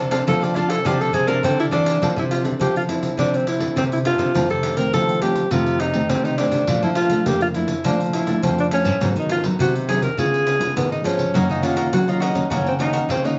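A breathy alto saxophone carries the melody up front in this lively, playful excerpt of samba and choro, entering at 0.3 seconds with mellow vibrato, scooped notes and a jazz-style delivery, its tone roomy and set back in the space. Two fingerpicked nylon-string guitars support it at 103 BPM in a straight 4/4: one provides classical accompaniment, while the other takes the bass line with a deep tone and audible finger squeak. A jingly pandeiro, played with soft hands, sounds distant in a large room. A crisp, bright cavaquinho adds picked accompaniment in the opening two seconds and returns at 11.3 seconds. The harmony moves from F6 and F7 through Bbmaj7, Abm7 and Db7 to Gb6, all under moderate studio reverb with a softened top end.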